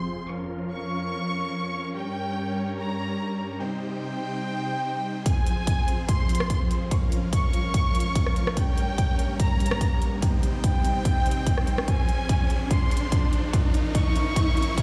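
A background electronic impact opens this chaotic, aggressive heavy wobble dubstep cut from a longer piece. A bowed studio violin section carries a focused, vibrato-rich melody with a smooth top and dub echo, while huge, detuned supersaw chords sustain beneath it, pumping against the sidechain as a low-pass filter sweeps across them. At 5.3 seconds, a build-up begins as a punchy, up-front electronic kick and a layered dubstep kit with metallic hats and rim clicks enter in a half-time, lightly swung feel. A background riser starts at 7.1 seconds, and a drum fill arrives at 11.9 seconds, pushing the tension onward over the F minor progression. The sound is that of a big system playing into a bare room, with large studio reverb around the parts.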